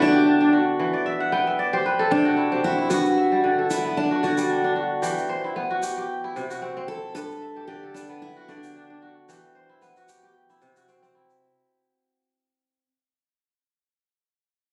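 Swung sixteenths at 113 BPM in 4/4 give this West African traditional piece, a fragment of a longer work, a hypnotic, warm lilt in G major. A ringing, crisp kora sits up front, spinning arpeggios from deep bass to high treble and adding an early fill. Beside it, a full-bodied picked steel-string acoustic guitar carries the melody in a narrow middle range, with audible finger squeak and a slapback echo. A grainy tube shaker enters softly at 2.9 seconds, far back in the mix. The guitar drops out at 9.0 seconds; the shaker carries on until 11.4 seconds, and the kora rings on until 12.8 seconds over a cycle of D, E minor, C and G. Captured on a phone in the room and finished with light studio reverb and compression, the whole passage fades out gradually from its opening.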